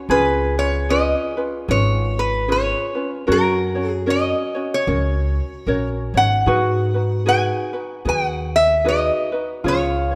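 A fingerpicked ukulele and a mellow, ringing concert harp open this languid, dreamy Hawaiian excerpt, joined almost at once by the lap resonator guitar and upright bass at 0.1 seconds. The tempo is a relaxed 75 BPM in 4/4 with a gentle swing on the eighth notes. Played with fingerpicks and a slide, the lap resonator guitar carries the melody up front with a metallic, nasal tone, while the light ukulele supplies accompaniment and the harp adds a second line beneath the melody. The pizzicato upright bass, strung with steel, sits forward in the mix with a woody, thumpy sound. The harmony moves from C#7 to F#, then G#m7, resolving to C# near 9.6 seconds, and a moderate concert hall reverb surrounds the ensemble.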